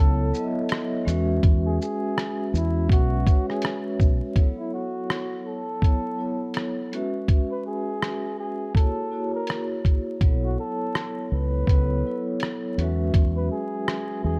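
A breathy, soft-attack flugelhorn sings a nostalgic, reflective jazz-style melody over airy, ringing soft-mallet vibraphone chords, both filtered and mellow, while a round, punchy dub bass sounds until 4.2 seconds and returns at 10.2 seconds, and a compressed, muffled sampler-style kit with a thumpy kick, hi-hat, rim click and shaker swings gently beneath this dark, vinyl-crackled lo-fi hip hop fragment cut from a longer piece.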